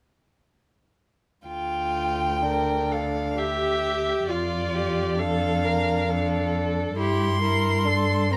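At 1.5 seconds a violin sings a smooth, vibrato-rich melody in D minor, joined by a focused second violin line and an expressive cello bass that slides between notes with portamento, all bowed in a slow, rubato 3/4 at 66 BPM. A viola enters at 2.4 seconds with an even, vibrato-laden accompaniment as the harmony moves from D minor to Dm/F and reaches C13/G at 7.0 seconds. Captured with close, detailed microphones and light reverb, this string quartet excerpt from a romantic classical movement feels solemn and melancholic.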